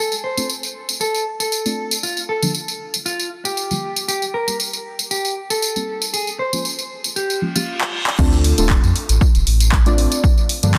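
Deep house at 117 BPM in 4/4 with a light 16th-note swing, this smooth, deep excerpt sits in D phrygian and moves through Dm7, Gm7, Cm7 and Bbm7 before returning to Dm7. A mellow, clean electric guitar carries the melody up front from the start, its dark fingered tone trailed by dub echo until about 8.1 seconds. Punchy analog drum machine parts with crash cymbal, handclaps, hi-hat and tambourine sit forward alongside soft, detuned chord stabs whose dark, wave-folded tone is thickened by chorus, sidechain pumping and dub echo. A reverse cymbal and a drum fill lead into the drop at 8.2 seconds, where a full sine-and-triangle sub bass with an added octave, also pumping against the sidechain, arrives with an electronic kick drum. Light digital reverb surrounds a dense, heavily limited modern master.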